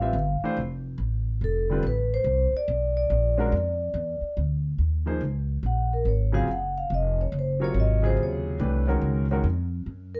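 This swung jazz fragment feels searching and spiritual, played close and dry with a dark, warm production. A vibraphone struck with medium mallets, motor off, carries the melody with a metallic, ringing tone, and from 4.8 seconds it takes the spotlight as a solo. Beneath it, a concert grand piano supplies intimate, natural accompaniment with a deep low register and audible action noise until it falls away at 9.4 seconds. An acoustic upright bass with steel strings is plucked pizzicato, sounding woody and warm and sitting up front in the mix. The harmony moves from a rootless Dm7 to Bb before settling into a lingering Ebm11 under the solo.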